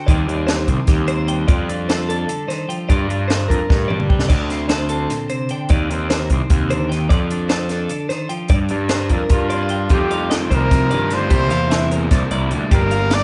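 Lightly reverberant and dry-drummed, this restless, intricate math rock and midwest emo clip moves in 7/8 at 299 BPM in eighths, with a compact cocktail kit of dark cymbals, high-tuned snare and punchy kick sitting up front beside a growly, fuzz-overdriven picked bass, while two clean, compressed twelve-string electric guitars share the ground, one bright and twangy playing accompaniment, the other warmer in the background chiming out arpeggios, as the chords move through Eb6, F13 and Gm7, and a drum fill arrives at 3.7 seconds. At 9.3 seconds a clear, close-miked trumpet with light vibrato takes the melody, and at 9.9 seconds a crunchy, double-tracked overdriven guitar riff joins behind it as the harmony shifts to F9sus4 and C9 before returning to Gm7.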